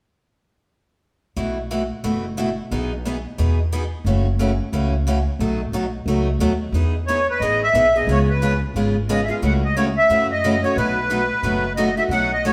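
Acoustic string swing in the jazz manouche style, playful and lively, with a picked parlour-style steel-string guitar, bright and boxy with fresh strings, sitting up front in the accompaniment alongside a woody, thumpy upright bass plucked on gut strings, both entering at 1.4 seconds. At 7.1 seconds, shortly after the second section begins, a sweet, reedy accordion takes the melody, mid-forward and up front with a light tremolo tuning, as the harmony moves through seventh chords. The band plays live together in a stone room whose wet reverb gives the whole fragment, cut from a longer piece, a lingering ambience.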